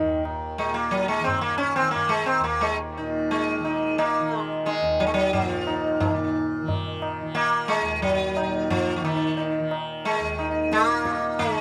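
Longing and solemn, this dry, outdoor Hindustani classical excerpt in 5/4 sets a round, up-front sitar, plucked with a plectrum and shimmering with buzzing sympathetic strings and a slapback echo, over a bright, shimmering tanpura drone, while a low-tuned, ringing tabla with its own slapback echo enters at 0.3 seconds.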